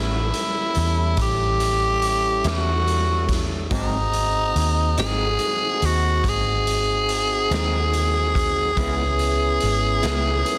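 A dense, heavily limited modern mix with light reverb frames this soulful, brooding slow blues in 12/8, where a raspy, growling tenor saxophone leads up front over a round, foam-muted fingered bass, a clean tonewheel organ holding sustained chords through a slow rotary speaker, a slightly broken-up lo-fi electric guitar with harmonic tremolo in the background, and a saturated garage drum kit with punchy kick and rolled-off top that enters at 0.3 s, the harmony moving from A7 to G#7 and C#m7.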